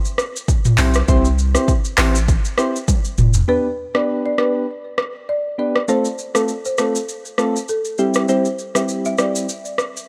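Romantic and breezy, this short afrobeats cut moves at 100 BPM in 4/4 with a light swing on the sixteenths, set in C major. An electronic afro-pop drum kit sits up front with a deep kick, metallic hi-hats, handclaps, rim clicks, shaker and toms, its overdriven sound carrying the grit of a small room. From 0.8 seconds, soft electric-piano-like synth keys add round, mellow chords shimmering with chorus and tremolo, while a punchy sine sub bass with a pitch-drop attack anchors the opening until 3.4 seconds. A drum fill at 2.9 seconds leads into the second section at 3.5 seconds, where a folk marimba with medium mallets takes the melody, its woody, rustic tone trailed by digital delay. The harmony moves from C to G, then F, and back to C, all wrapped in a digital ambience.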